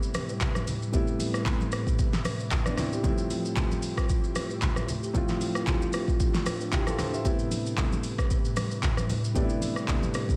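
Up front sits a deep house drum kit, layered and electronic, its deep kick and fat snare carrying a large-room sheen alongside metallic hats, handclaps, rim clicks and shaker across the whole 10.4 seconds. This short cut from a longer amapiano piece moves at 114 BPM in 4/4 with a 55% swing on the sixteenths, setting a hypnotic, soulful mood in A minor. A grand piano supplies the accompaniment, intimate and a little boxy, with audible action noise and long sustain, moving through Am9, Fmaj7/A at 3.0 seconds and back to Am9 at 7.3 seconds. Behind it, an ethereal pad of detuned sawtooth and triangle voices with a noise layer holds mellow, slow-attack chords, thickened by ensemble chorus and built-in reverb. Low-tuned acoustic congas with a bright, thin-skinned tone sit in the background from 0.1 to 10.1 seconds, all within a digital ambience.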